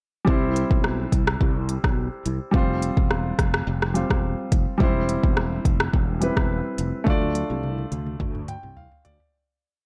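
A sparse dancehall beat at 106 BPM in C major, with rim clicks, crisp hats and a deep kick on an electronic, produced afro-pop drum kit roughened by vintage 12-bit sampler grit, carries this sunny, summery verse, where a growly, punchy fretless electric bass with ensemble chorus plays syncopated low lines and a warm grand piano holds open-voiced chords, all in light reverb, before a drum fill running through the fade that begins at 7.1 seconds, joined by a piano fill from 8.2 seconds, closes out the piece.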